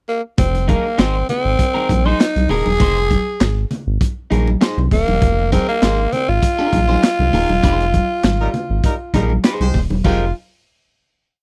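A heavy on-the-one funk beat at 99 BPM drives this hypnotic F minor piece, where a crunchy breakbeat kit with a punchy kick and a round analog bass riff anchored on the downbeat carry a raspy, growling tenor saxophone's call phrases, joined by clipped guitar chords with phaser from 0.7 seconds, a syncopated conga groove in the background, and a distant horn section adding punches at phrase ends from 8.4 seconds before the dry, close-sounding band lands on a final chord at 10.0 seconds.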